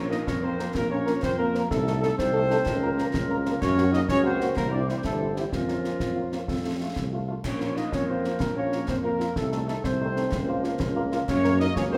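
Steeped in the lingering reverb of a church or concert hall, this excerpt of a stern, martial wind-band march in 6/8 sets a mellow, tight trumpet section on the melody over a dark woodwind section and a vintage-toned euphonium on second lines, a soft-attacked tuba bass, punchy French horns in accompaniment, very quiet trombone chords, and concert snare, bass drum and dark-toned clash cymbals.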